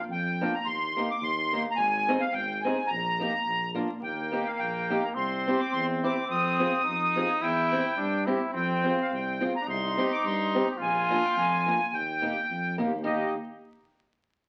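A swung 2/4 at 106 BPM drives this jolly, festive alpine folk dance in Eb major, where a reedy, sweet accordion with light tremolo tuning carries the melody up front, a boxy fingerpicked swing-style acoustic guitar comes in from 0.4 seconds, a distant, mellow tuba with light vibrato holds the bass, and a warm, classical-style trumpet joins with a second line at 4.0 seconds, all heard through a wet large-studio reverb and the crackle of a very old 78 rpm record in this fragment cut from a longer piece.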